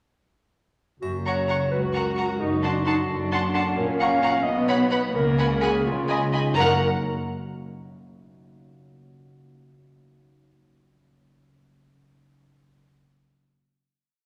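A wet recital-hall glow surrounds this short, playful and mischievous cinematic cue in F# major at 86 BPM in a straight 6/8, where a mellow, soft-edged clarinet and the harp's ringing broken chords enter at 1.0 seconds over a bowed cello section and a lush double bass section in the background, a very quiet, close triangle sparkles briefly, two vibrato-rich violin sections add focused sustained and after-beat chords from 1.3 seconds, and an expressive viola counter-melody joins at 1.7 seconds before everything settles onto a final F# chord at 6.6 seconds.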